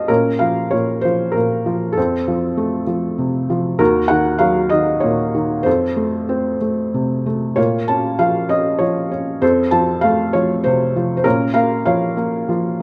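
In a rubato 3/4 at around 97 BPM, this moody, brooding classical excerpt for solo piano unfolds in B-flat harmonic minor, cut from a longer piece and lasting 12.8 seconds. A felt-muted upright piano, soft and intimate with a thin felt tone and short sustain, sits up front and moves through a lyrical passage built on B-flat minor, F and E-flat minor chords. Moderate recital hall reverb surrounds the mellow instrument.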